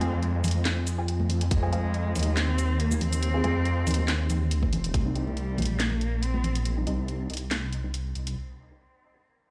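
Deep dubstep at 140 BPM in C minor with a half-time, lightly swung feel and a cavernous, meditative mood, cut from a longer piece: a rumbling, saturated detuned saw bass sits up front from the drop at 0.0 s and gets a filter sweep from 4.9 s as the chords move from Fm to Cm, while a distant bowed cello sings an expressive melody with vibrato and portamento through dub echo, nasal filtered chord stabs with subtle chorus and dub echo pluck in the background, a garage kit of cracking snare, claps, hats and shaker plays alongside bright background congas, and a tight electronic kick lands only briefly at 1.5 s and 4.6 s, all in a bare, booming room sound.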